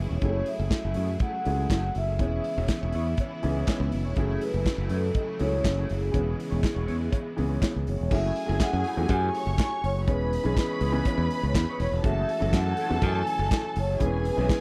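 A straight 4/4 disco groove at 122 BPM in F# minor drives this danceable, glamorous fragment, where punchy drums with bright cymbals and a growly fingered bass sit up front, an intimate grand piano with audible action noise, a clean wah-and-chorus guitar and crisp background handclaps fill in, a ringing soft-mallet vibraphone carries the melody over F#m9 and E6 chords, and biting, distant strings give way at 8.1 seconds to a dark, woody second string line, all in a dry, close 1970s-style studio sound.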